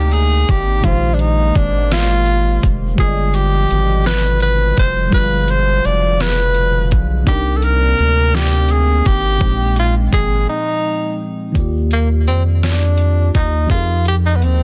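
A breathy tenor saxophone with subtone and scooped notes carries the melody up front in this intimate, slow six-eight R&B fragment, its line touched by delay before it takes a jazz-style solo from 11.6 seconds. Beneath it, a mellow FM electric piano, dark and decaying with chorus and phaser, plays the chords, and a hollow, flute-like pad sustains softly in the background until 11.5 seconds. A round analog bass and a produced electronic kit with a knocking kick, deep snare and metallic hats sit prominently in a dry, dense, heavily limited mix, with a break at 10.5 seconds.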